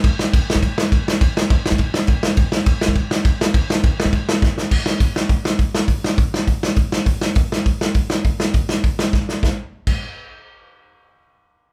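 Punk at a brisk 204 BPM in a straight 4/4, this upbeat, energetic clip is carried by a loose indie drum kit of kick, snare, hi-hat and crash cymbal, sounding natural and up front with a punchy kick and medium-tuned snare. Drum fills at 4.4 and 9.1 seconds lead into each new section, and the kit stops at 10.0 seconds. Light reverb gives the sense of a band playing live in one room.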